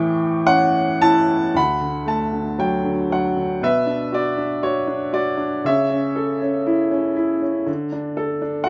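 A short, tender excerpt of lyrical classical solo piano opens on an A7 chord before settling into D major, unfolding at a calm 59 BPM in 4/4 with a gently rubato feel. The only instrument is an upright piano, clear and woody with a natural tone and long sustain, placed up front and spanning D2 to C#6 across its 8.7 seconds. After a brief opening passage, a new section begins at 1.6 seconds, moving from D through Bm and A/C# before arriving on an open D5 at 7.7 seconds. A moderate small-room reverb surrounds the piano with a modest sense of space, keeping the tender, calm mood intact. Cut from a longer piece, it feels like a gentle, calm moment caught in passing.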